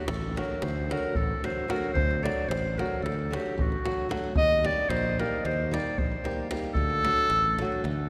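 Set in the long, cathedral-like wash of a church or concert hall, this short cut from a longer Balkan wedding-band tune in 9/8 feels virtuosic yet bittersweet. A clear, classical-style clarinet carries the solo melody up front over a boxy, fingerpicked nylon-string guitar, a growly fingered electric bass and a tight, close davul, all playing from the start to about 8 seconds. The harmony moves from D to Eb at 4.4 seconds before settling back on D at 6.8 seconds.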